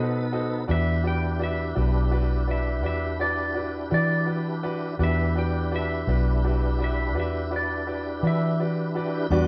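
A soulful, smoky slow blues in E minor at 56 BPM in 12/8, this excerpt opens with the full band playing live in one room: a clean, slide-played lap steel guitar sings the melody until 8.6 s over a bright, woody upright piano with audible action noise, a full tonewheel organ holding sustained chords through a slow rotary speaker and chorus vibrato, and a dark, round, foam-muted fingered electric bass sitting up front, all in moderate studio reverb as the harmony moves from B7b9 to Em7.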